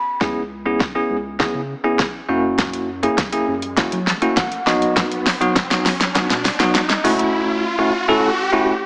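Dance-pop excerpt with a confident, driving build-up, where a bright, bell-like tine electric piano and a round, dark analog bass both pump with sidechain alongside a punchy, layered pop drum kit of fat snare and metallic hats, while an electronic riser enters at 2.8 s, the mix set in a lush hall reverb and thinned to a small-speaker tone.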